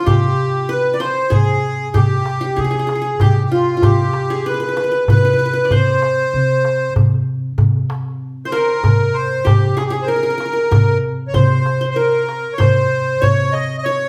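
A hypnotic 3/4 pulse at 96 BPM drives this longing Arabic maqam ensemble fragment, where a reedy, sweet accordion with light tremolo tuning carries the melody up front over a bright-edged, fingerpicked qanun second line, a woody pizzicato upright bass holding C3, and a clay-shelled darbuka with natural skin. The live band shares one room with a large studio reverb, and the piece shifts into a new section at 7.6 seconds.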